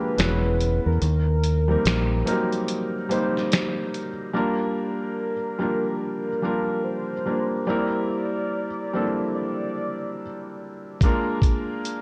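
Swung sixteenths in 4/4 carry this hazy, reflective lo-fi hip hop excerpt, where a gritty, sampler-style drum kit of finger snaps, hi-hat, fat snare and thumpy kick (muted from 1.0 s) sits up front beside a dark, round fingered electric bass that stops at 2.2 s, while a soft, felt-muted upright piano with audible action noise and cassette haze accompanies a velvety, detuned synth lead melody carrying chorus, vibrato and tape echo, the drums returning at 11.0 s in a lightly reverberant space.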